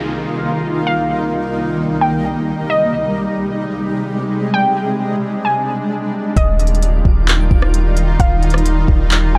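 Ethereal and spacious, this half-time atmospheric cloud-rap passage at 131 BPM opens on a shimmering ambient pad with chorus, reverb and sidechain pumping over a background downlifter, joined at 0.9 seconds by a warbly, dusty, nasal pluck melody with tape echo and a low-pass filter, before a smooth R&B drum kit of soft kick, hi-hat, handclaps and rim click arrives with a deep, long 808-style bass at 6.4 seconds and a faint twinkling granular texture glints behind them, all moving through Cm7, Abmaj7 and Ebmaj9 in a dark, dry production.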